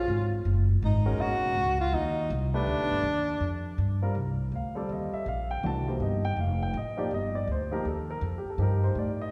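Tenor saxophone, grand piano and upright bass open together in this brief modal jazz excerpt, with a cool, searching mood and a swinging 4/4 feel. The tenor saxophone carries the solo melody in a narrow middle range, its soft attack and vibrato giving it a warm, jazz-styled voice that sounds distant and roomy even while sitting up front; it falls silent at 3.6 seconds. The grand piano accompanies throughout, spanning a broad range from its lower middle register up high, while the pizzicato upright bass supplies a woody, growly low end with a bright steel-string edge. The harmony moves from Ebm7 to G7 before settling on Cm11 at 4.2 seconds, where a second section begins and piano and bass carry on until 9.3 seconds. A wet, lingering reverb, recorded in a church or concert hall, surrounds the playing, lending the short passage a spacious, open character.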